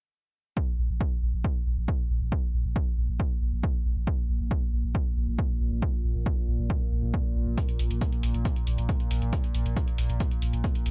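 A dry, punchy analog kick drives this hypnotic, intense peak-time techno excerpt at 137 BPM in straight 4/4. It enters at 0.6 s with a deep, thick, saturated sine sub bass close behind, both up front, and the bass pumps against the sidechain through a low-pass filter. From 1.7 s a mellow, evolving sawtooth and pulse-wave drone on Bb2 sits low in the mix with chorus, a moving notch and sidechain pumping, while tape-warm analog hi-hats, re-recorded in a small room, join at 7.6 s inside a dark, dry production.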